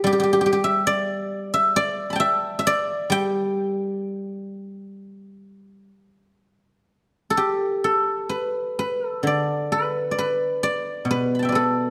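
A solo guzheng, played with fingerpicks and sitting up front with a silvery, ringing tone, opens this pastoral, flowing excerpt of Chinese traditional music in the G gong mode, moving in a rubato 4/4 around 60-72 BPM across a range from B2 to B5, shifting into a new section at 7.4 seconds before the cut at 11.9 seconds, all held in a moderate scoring-stage reverb.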